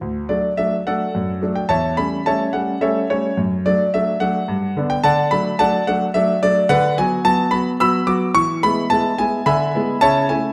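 A classical-period piano sonatina in D major, this graceful, playful excerpt moves at 108 BPM in a straight 3/4. A solo concert grand carries the whole passage from 0.0 to 10.5 seconds, ranging from D2 up to E6, its tone clear and natural with a slightly worn character and a deep bass, placed up front in the sound. The harmony travels from D through inversions and an A7 before touching G, B minor and E, then settles on an E7 and a closing A over C-sharp that leaves the phrase poised on the dominant, as if the piece is about to continue. The tuning sits a touch high at A4 = 441 Hz. A moderate recital hall reverb with a 1.6-second tail gives the instrument an open, airy setting.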